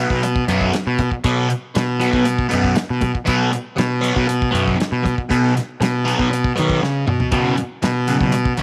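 A straight 4/4 groove at 119 BPM drives this short, kaleidoscopic psychedelic rock excerpt, where a double-tracked fuzz guitar riff with phaser and a gritty overdriven picked bass sit up front over a dry, damped 70s drum kit with a tight kick and medium-tuned snare, which plays a fill from 6.8 to 7.3 seconds as the chords move from B5 to F#5 at 7.3 seconds in a light studio ambience.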